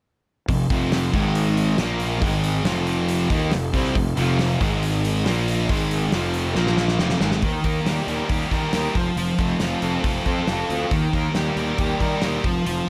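At 0.5 seconds the whole band kicks in together on a swaggering, sunny classic rock groove at 138 BPM in a straight 4/4. An up-front, biting overdriven guitar and a darker, sludgy distorted guitar sitting further back both play the riff, moving through F, Ab5 and Bb5. Beneath them a growly, fuzz-laden fingered electric bass adds overdrive, and a damped 70s drum kit keeps hi-hat, tight kick and fat snare dry and close. Very quietly underneath, a piping tonewheel organ holds sustained chords with key click, chorus vibrato and a slow rotary speaker until a drum fill leads into a new section at 7.4 seconds. There the riff settles on Eb and F, with a small room giving the cut from a longer piece a snug ambience.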